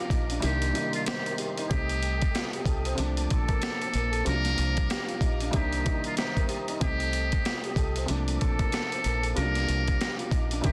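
Dense, heavily limited and lightly reverberant, this short cut from a longer boom-bap hip-hop piece moves at 94 BPM with a tough, reflective mood: a gritty sampler-style drum kit with a thumpy kick and high-tuned snare sits up front (its kick muted from 0.4 to 1.7 seconds), a round, punchy dub bass holds the low end, a woody, intimate upright piano with audible action noise accompanies over Cm7, Cm6, Bbmaj7 and Bbmaj13 chords, a flute-like tonewheel organ with chorus vibrato and key click sustains chords in the background, and from 0.4 seconds a breathy, buzzy metal-muted trumpet carries a whispered jazz-style melody through delay.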